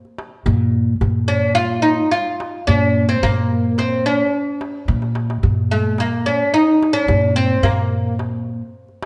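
A deep, woody fretless oud, plectrum-plucked with its double strings sitting up front, enters at 1.3 seconds to carry a hypnotic, melancholic line in this Arabic maqam ensemble piece, following a growly pizzicato upright bass that comes in at 0.5 seconds, all framed by a crisp, close and dry metal-shell darbuka played with soft hands that adds a short fill at 4.9 seconds, heard within a moderate recital-hall reverb.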